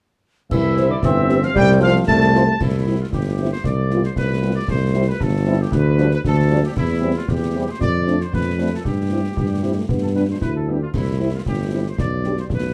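Rousing and spirited, this military-style march for wind band moves at 115 BPM in a straight 2/4, set in C major and cut from a longer piece. A warm, distant trumpet section carries the melody throughout, with light vibrato and a roomy, classical sound. At the start, a pure, tongued piccolo and a soft-attacked euphonium add second lines until 2.6 seconds, while a tight trombone section holds sustained chords; the euphonium returns briefly around 9.4 seconds. A mellow French horn section fills in the accompaniment, and an up-front tuba with a smooth top anchors the bass from beginning to end. Clash cymbals, concert bass drum and concert snare drum are close and acoustic, with dark cymbals, and the whole sits in moderate studio reverb with a dark production. The harmony moves from plain C through G7 and Dm7 colours toward a close on G/B.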